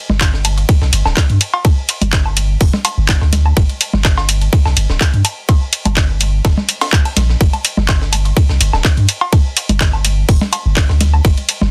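A tight electronic kick drives a 4/4 groove at 125 BPM with a light swing on the sixteenths, setting a clinical, sparse minimal techno pulse in G minor for this short section cut from a longer piece. Up front beside it, a punchy sub bass with a sine-like, mellow body and a pitch-drop attack sits low between D1 and G2, its sustained notes pumping through sidechain compression. A garage kit adds handclaps and warm hats, both re-recorded in a small room, while a quieter, pitched-up breakbeat kit layers gritty ride, snare and hi-hat, all thinned by high-pass filtering. Congas, cowbell and woodblock with an analog, tape-warm character drift through dub echo. The mix is dry, with little reverb, and mastered dense and heavily limited in a modern style.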